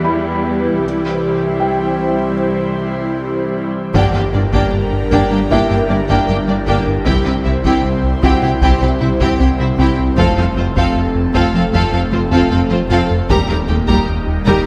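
A breathy, airy synth pad sits up front with chorus and phaser, holding sustained chords from the opening over a smooth viola section, a background cello section and a soft, felt-muted upright piano whose delayed notes carry audible action noise. This cinematic hybrid of orchestra and electronics moves at 77 BPM in a straight 4/4, with a futuristic, brooding mood as the harmony passes from Em to C. At 3.9 seconds the texture thickens: a distant, focused violin section takes a second line, and a round, dark analog bass plays a riff. At 4.0 seconds a thick, beating detuned saw bass adds saturated menace beneath it, joined by a very quiet bowed double bass section and a very quiet taiko ensemble with heavy sticks, while the chords shift through Gm, C, F and D#. A moderate scoring-stage reverb gives the strings a lush, symphonic space, and the passage is cut from a longer piece.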